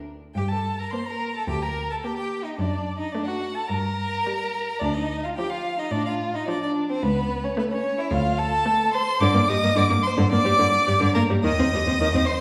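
Cheerful and spirited, this quick classical-period movement for string quartet moves with a rubato feel through a minor-key harmony. A single bowed violin carries the melody from 0.3 seconds, its vibrato tone rich and focused, while a second violin, smooth and even, adds a lower second line just after. The cello anchors the bass from 0.4 seconds with a close, smooth sound, and the viola joins at 0.9 seconds with a focused accompaniment in the middle range. Both violins and the cello sit up front, each played by one player. The quartet rings in a recital hall with a noticeably wet reverberation that suggests a church or concert hall, and the passage is cut from a longer piece.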